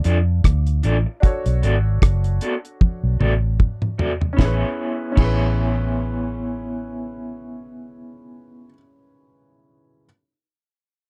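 Smooth and sweet, this short lovers rock reggae excerpt moves at 76 BPM in A major with a swung sixteenth feel, passing from Dm and Bm7 to a lush Amaj9 at 4.4 seconds. A deep, dry drum kit with a high-tuned snare, tight kick, rim clicks, toms and cymbals plays up front until 5.4 seconds, rolling through a fill from 2.8 seconds, while a round, foam-muted fingered bass anchors the low end. Slightly broken-up, lo-fi guitar stabs with tremolo sit forward in the mix, and a present baby grand piano carries the accompaniment to the end at 10.1 seconds, all in a dark production with little reverb.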